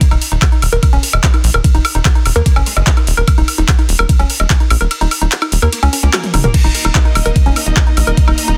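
An overdriven, knocking electronic kick sits up front in this hypnotic, driving psychedelic trance excerpt, joined by a punchy sawtooth sequencer bass and an overdriven drum-and-bass kit of bright hats, handclaps, ride, crash, toms and woodblock. The kick drops out from 4.9 to 6.5 seconds, and a drum fill and band accent arrive at 6.1 seconds. Over this a woody, wave-folded pluck riff pumps through chorus and tape echo, while a metallic FM wobble bass with analog chorus and delay sits in the background. At 6.5 seconds a dark, lush symphonic string section enters with expressive vibrato, all within a dense, heavily limited modern master.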